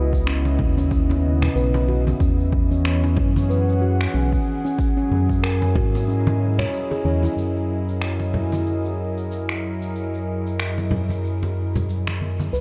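Organic downtempo at 93 BPM with a gentle 16th-note swing, this meditative, warm excerpt drifts over C#m9, E69 and F#13 chords carried by a smooth, warbling vintage analog pad with lush chorus and sidechain pumping, above a deep, round, up-front analog bass that pumps along with it. A mellow, close-miked steel tongue drum plays pure, ringing arpeggios with delay until 7.4 s, while a punchy layered electronic kick holds the pulse until 5.9 s. Overdriven electronic shaker and finger snaps and ringing acoustic congas in the background carry on through a dark, lightly reverberant mix.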